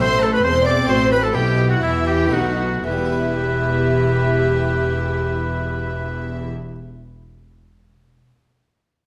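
A clear solo oboe carries the melody of this stormy, driving baroque-style concerto movement in 3/4, with a rich, focused chamber violin section also playing melody higher up, an expressive studio violin section with portamento adding a second line, a lush symphonic viola section and a round, plucked harpsichord in the background filling the accompaniment, and smooth chamber cellos and close double basses holding the bass, heard in a wet recital-hall reverb in a short cut from a longer piece that slows down over its first 2.8 seconds.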